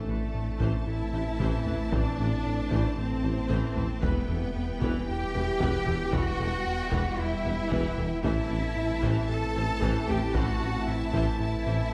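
In a straight 4/4 feel, this vast, futuristic cut from a hybrid orchestral and electronic film score moves from Am to Em and back to Am, with bowed, vibrato-rich violin sections carrying a focused melody and a lush second line over a viola section and a prominent, smooth cello section. Bright trombones, mellow French horns and a very quiet ethereal, airy pad hold sustained chords. Low down, a punchy sub bass with a pitch-drop attack, a round analog bass riff, a background tuba and a soft-attacked double bass section with portamento fill out the bottom, while close, dry taiko drums struck with hard sticks enter at 0.6 s, all set in a moderate scoring-stage reverb with a dark production.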